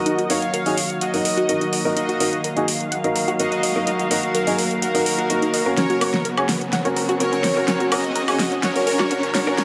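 Progressive house at 126 BPM in 4/4 with a straight feel, this dreamy, emotional passage in Eb minor is a build-up cut from a longer piece, moving from Ebm to Gb at 5.8 seconds. A smooth, detuned supersaw with a sub octave carries the melody through tape echo, while a very quiet airy lead with chorus, phaser and vibrato floats a second line alongside it. A close, intimate chamber string section bowed sul tasto with light vibrato holds sustained chords under a low-pass filter that sweeps across the whole passage, and a dark, mellow baby grand piano punctuates with stabs fed through digital delay. In the background, a lush, wave-folded unison pluck spins arpeggios with its own moving notch and digital delay. An up-front deep house drum kit with a fat snare, metallic hats and woodblock drives things forward, breaking into a fill from 5.8 seconds, as a very quiet riser enters at 3.6 seconds. 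Light reverb and a high-pass filter give the mix a clean, spacious finish.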